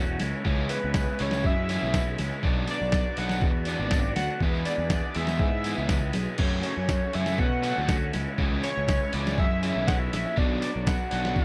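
A dry, close recording with a 1970s studio feel opens this cool, moody indie rock excerpt, cut from a longer piece and moving in a straight 4/4 over chords that run from C#m through Bm, E and F#m. Up front, a gritty, pitched-down sampler-style drum kit with a thumpy kick, medium-tuned snare, hi-hat and crash enters at 0.2 seconds, over a punchy fuzz bass that has been sounding from the start with a warm overdriven tone. Two overdriven guitars play riffs: one biting and bright, coated in lush chorus and slapback echo, the other raw and lo-fi, swirled through a phaser. A hollow, woody square-wave lead with vibrato and chorus sings the melody from the first moment, its slapback echo adding a short repeat. Underneath, a very quiet, silky string machine warbles sustained chords, while a jingly tambourine sits in the background from 0.1 seconds.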